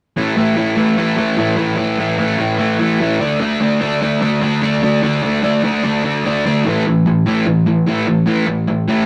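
The recording has a rough rehearsal-room feel, with warm saturation and a moderate stone-room reverb that lends the sound some echo. This brief punk fragment, cut from a longer piece, features a lone overdriven semi-hollow electric guitar playing solo from 0.2 to 9.1 seconds. The guitar sits up front, bright and picked, and its double-tracked hollow-body tone gives it a thick, snarling edge. At 148 BPM in a straight 4/4, it moves through A5 and D5 power chords before returning to A5 at 6.6 seconds, where a new section begins. The mood is rebellious and rowdy, with the raw energy of a rehearsal-room run-through.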